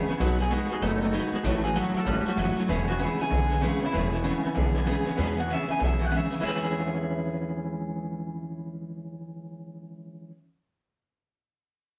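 This rowdy, upbeat rockabilly piece opens with a swinging band playing live in one room: a bright, jumbo-bodied steel-string acoustic guitar picks the accompaniment, a twangy electric guitar through a small old amp plays a riff with tremolo, and a thumpy, dark upright bass on gut strings is plucked up front. A woody upright piano joins a moment later in the background, and at 0.4 s a second electric guitar through a small old amp takes the melody up front, its tone slightly broken-up like the riff guitar's. The harmony moves from B6 to A6 to E6 in the first few seconds, and the music passes through three short sections before the cut at about 10.3 s. Finger squeaks on the acoustic guitar and a moderate studio reverb give the sound a lively room feel.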